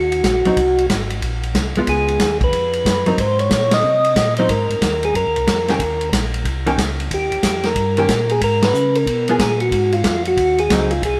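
A bluesy, soulful soul jazz organ trio excerpt opens on tonewheel organ, with a mellow percussive melody voice out front and a round, key-clicking organ bass line below, both turning through a slow rotary speaker, while a vintage kit swings on hi-hat, ride, snare and a punchy kick. A dark, picked hollow-body jazz guitar adds compressed comping from 0.5 seconds over dominant blues changes, and the whole band hits accents at 3.7 and 8.6 seconds. The sound sits a bit back in an echo-chamber space, with the melody organ and drums kept up front.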